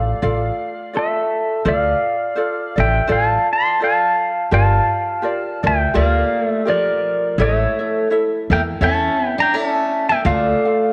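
Swung eighth notes in 4/4 carry this sunny, relaxed Hawaiian excerpt, cut from a longer piece, where an up-front, twangy electric pedal steel guitar takes the melody with fingerpicks, slide and volume swells over a light, fingerpicked ukulele and a thumpy, woody pizzicato upright bass that stops at 10.5 seconds. A full-bodied dreadnought acoustic guitar adds a fingerpicked second line with audible finger squeak, sounding only briefly at the start and then returning from 6.0 seconds. Moderate echo chamber reverb gives the warm tones a roomy glow as the minor-key harmony moves from Dm through Gm7 to A and back.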